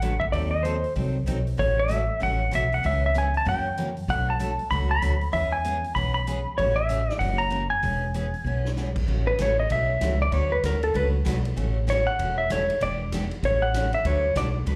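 Western swing country at a brisk 192 BPM in A major, swinging and cheerful, heard as a short cut from a longer piece played live through a club PA with light room reverb. A clean lap steel guitar carries the melody up front, its dark, compressed slide tone played with fingerpicks and dressed in plate reverb and slapback echo, and from 9.1 seconds an electric slide guitar solo runs through the closing section. Beneath it, a picked dreadnought acoustic guitar adds bright, full-bodied accompaniment with the same plate reverb and slapback, while a woody fretless electric bass sits up front with a round, punchy, hollow-body sound. A swinging big-band drum kit with ride, hi-hat, crash, a medium-tuned snare and a boomy kick has a natural, big-room character and drops a quick fill at 8.5 seconds. The harmony leans on jazzy sixth, seventh and diminished chords such as A6, C#m7, F#7b9 and D6, giving the tune its sophisticated swing flavor.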